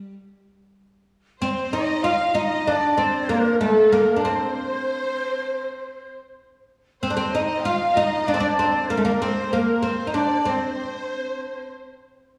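A straight 9/8 pulse at 193 beats per minute on the eighth note drives this Turkish makam ensemble piece, tuned to A4 = 442 Hz and cut from a longer work. The mood is melancholic and full of longing. A plectrum-plucked fretless oud carries the melody from the opening second, its double strings giving a woody, deep tone that sits up front and ranges from G3 to F4. At 1.4 s a breathy, close-miked ney enters on a second line, its end-blown reed-cane voice expressive, tongued and shaded with vibrato. At the same moment a rich studio violin section adds another bowed second line, with its own vibrato lending an expressive ensemble character. Wet scoring-stage reverb with a 1.6-second tail, heard from further back amid small-room ambience, casts the three parts in a spacious, mournful glow.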